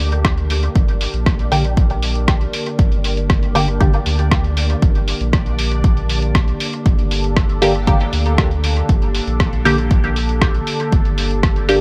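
An overdriven, deep electronic kick sits up front in this hazy, meditative dub techno fragment from a longer piece, with a round sine sub bass and a muffled, compressed sampler-style kit of hi-hat and rim click sent through dub echo. A dark, warbling pad of detuned square and triangle tones holds a single minor chord under chorus, reverb, 12-bit grit and sidechain pumping, while a resonant sawtooth texture bubbles through random filter steps. A muted, filter-plucked sawtooth chord stab with phaser and dub echo enters at 1.5 seconds and returns at 7.6 seconds, all within a digital ambience.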